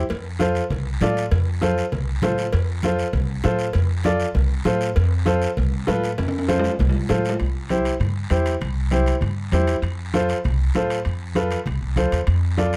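Cumbia at a brisk 197 BPM in straight 4/4, this joyful, sunny excerpt sets a dark, woody pizzicato upright bass and a smooth, vintage upright piano with long sustain up front, while ringing cowbell and timbales, bright background congas and a raspy, dry guiro drive the groove over chords moving from F to C at 7.4 seconds and back to F at 9.8 seconds, with a drum fill leading into the second section, all under light reverb and close, detailed miking.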